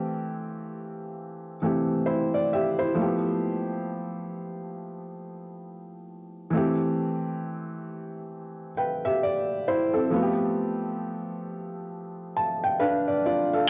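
Hip hop in a hazy, melancholic mood, this short excerpt cut from a longer piece features a felt-muted upright piano playing an up-front, intimate accompaniment through the whole 13.7 seconds, its thin felt tone softened by cassette tape and plate reverb as it moves between Am7 and G9 with a swung sixteenth-note feel, all captured in a home cassette recording with a moderate studio reverb and a dull top end.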